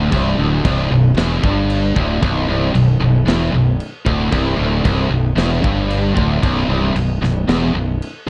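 A dark, warm production with moderate small-room ambience frames this aggressive heavy metal excerpt in B minor at 114 BPM with a half-time feel, where two bright, high-gain distorted guitars, one up front and one set back, grind out a low riff over a growly, fuzz-overdriven fingered bass, while a tight drum kit with a rolled-off top and 12-bit sampler grit strikes kick, snare and crash from 0.1 seconds, all holding on a single Bm chord for about eight seconds.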